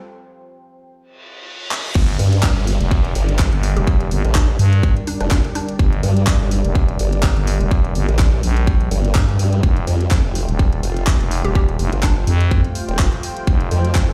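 A big, roomy digital ambience fills this gritty, swaggering bass house cut, heard as if played through a large sound system in a bare room with a large studio reverb. It opens on a moody, deep ambient pad, sawtooth and sine with a sub octave, chorus and built-in reverb, sitting dark in the background before a reverse cymbal and downlifter lead into the drop at 2.0 s. There, at 125 BPM in 4/4 with a 16th-note swing, a tight, overdriven electronic kick drives up front alongside a layered garage kit of crash, handclaps and hi-hat, all in G minor over a Gm chord. Two basses carry the weight in the low register: a thick, growling FM bass and a saturated, detuned formant-sweep wobble bass with chorus, both pumping to the sidechain. Behind them an evolving, full-bodied resonant pad swells brightly with chorus, and at 3.8 s a hollow, bouncy square-wave pluck adds a mellow, decaying figure through digital delay, returning briefly later. 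The harmony shifts to Fadd9 at 9.6 s as the groove rolls on.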